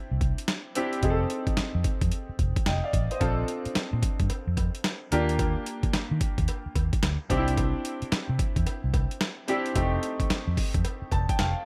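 A swung sixteenth-note groove drives this bouncy, flirty new jack swing excerpt, built on a gritty, pitched-down boom bap sampler kit with a thumpy kick, medium-tuned snare and hi-hat, overdriven and up front. A dark, foam-muted electric bass gives round, punchy low end beneath a clear, polished concert grand piano whose short-sustained chords, colored by analog chorus, move through Cadd9, F7, Bbmaj7 and Ebmaj7 before a piano fill at 10.8 seconds. A metallic, saturated cowbell joins in the background at 3.2 seconds, and the dry, bright 1980s-style digital production keeps the piano and drums present and close.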